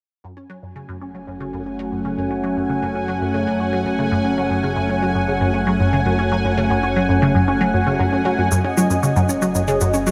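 Drenched in a huge ambient reverb with an 8.1-second tail, this cosmic, mysterious slice of sequencer-driven space music is cut from a longer piece. A juicy, squelchy blip pluck, built from square and sawtooth waves, carries the riff up front from 0.2 s, colored by phaser, ensemble chorus and delay. A bubbling stepped-filter texture with random filter steps sits high above it, while a low analog drone with pulse-width modulation and chorus arrives at 1.6 s. The pluck, texture and drone all fade in together over the opening stretch. A bright, morphing wavetable pad of detuned unison voices holds sustained chords over an F#madd9 harmony, shimmering through its own phaser and reverb. At 8.5 s, a tape-flavored cabasa and bongos enter, re-recorded in a small room and trailed by delay, to open a new section.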